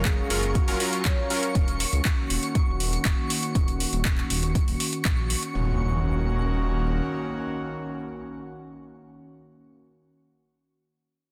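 A dense, heavily limited modern master with light reverb carries this bittersweet, driving progressive house fragment, where an overdriven, up-front electronic kick and a deep house kit of handclaps and metallic hi-hats sit in a small room over a rumbling, detuned saw bass, while a brief round, octave-layered lead with chorus, vibrato and digital delay, punchy supersaw stabs with dub echo, a breathy, chorused pad under a filter sweep, a sparkling granular shimmer in the background and a very quiet downlifter and impact all pump to the sidechain (apart from the effects), before the drums drop out around 5.5 s and the pad holds on with the bass until 7.0 s and with the impact until 9.3 s.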